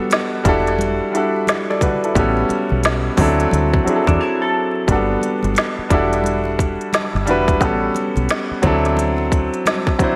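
Relaxed and warm, this short excerpt from a longer neo-soul R&B piece sets a clear, up-front grand piano over Em11, A13 and D9 chords, backed by a tight, woody electronic kit with finger snaps and crisp hats, very quiet distant congas, and a dark, round, punchy fingered bass, while a clean hollow-body jazz guitar drenched in lush chorus slips in only from 4.1 to 4.9 seconds during a brief break, all bathed in dreamy hall reverb and vinyl crackle.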